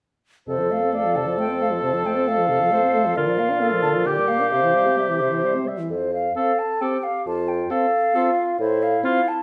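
At 0.5 s a wind quintet sets off together in a cheerful, spirited classical-period movement in a quick, rubato three-beat metre, with a hollow, tongued concert flute carrying the melody with vibrato and close presence, a smooth-topped oboe singing a second line, a warm, soft-attacked clarinet and a mellow French horn filling the accompaniment, and a distant, roomy bassoon holding the bass, all in a wet stone room as the harmony moves from F through Bb and C back home to F/A before the flute and clarinet stop at 9.4 s.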